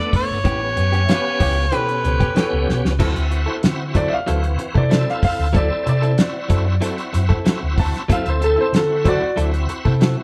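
A gritty, overdriven harmonica opens this swaggering, rollicking soul blues excerpt alongside a bright, shouting tonewheel organ, its slow rotary speaker and chorus vibrato adding motion and a touch of key click. The harmonica line is brief, ending at 2.7 seconds, where a drum fill hands off to the next section. Underneath, at 94 BPM in straight 4/4, a cloth-damped, thuddy drum kit with a fat snare, tight kick and dark cymbals sits up front beside a round, punchy fingered electric bass. A compressed, direct-recorded clean electric guitar adds picked stabs over harmony moving from A9 to D9 in D mixolydian. A woody, intimate upright piano enters as a second line at 1.1 seconds and takes the solo from 3.0 seconds, its audible action noise and long sustain giving the passage a polished, close feel. The whole band sounds as if playing live in one room, with moderate studio reverb.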